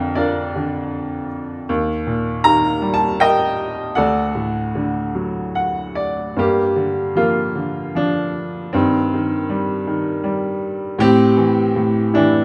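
A clear, boxy baby grand piano sits up front as the sole voice in this brief, melancholic classical passage, its short sustain lending the rubato phrasing in 3/4 a dark, intimate edge across a range from D2 to Bb5. The first section moves through Bb/F, Eb and D before a piano fill at 5.2 seconds leads into a second section at 6.4 seconds built on Gm7, Cm/G and Am7. A moderate scoring-stage reverb of 1.5 seconds gives the lyrical playing a measured sense of space, and the passage is cut from a longer piece.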